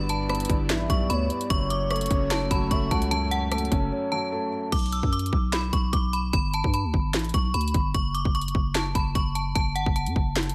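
Menacing and hard-hitting, this trap cut from a longer hip hop piece moves at 149 BPM in a half-time feel, tuned to A4 = 443 Hz. A metallic, inharmonic FM bell carries the melody throughout, ringing with chorus over a growling, buzzy 808-style bass that sits up front alongside an overdriven trap kit of hard-clipped kick, sharp snare, bright hats, handclaps, rim click and crash. In the opening stretch, a felt-muted upright piano adds intimate, mellow accompaniment with audible action noise, while an airy, breathy pad warbles softly in the background with slow-attack sustained chords. A smooth gliding lead with vibrato and portamento enters at 0.7 seconds as a second line, treated with chorus and digital delay. After a break from 3.9 to 4.7 seconds, the piano, pad and lead drop away, leaving bell, bass and drums to drive the section built on Bm, G and F#m. Light reverb gives the mix a digital ambience.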